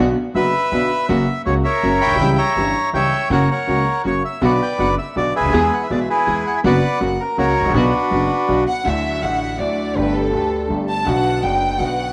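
Set in a moderate echo-chamber room with a touch of tape saturation, this sultry, passionate tango excerpt moves in a rubato triple metre. A reedy, airy bandoneon sits up front with the melody from 0.4 to 8.6 seconds, over a brilliant upright piano accompaniment, smooth bowed chamber strings playing stabs in the background, and a woody, thumpy pizzicato upright bass on gut strings. An intimate, soft-attack violin section with light vibrato and tape echo enters at 8.7 seconds, and from 8.9 seconds, as the harmony brightens, it takes a featured second line through to the end.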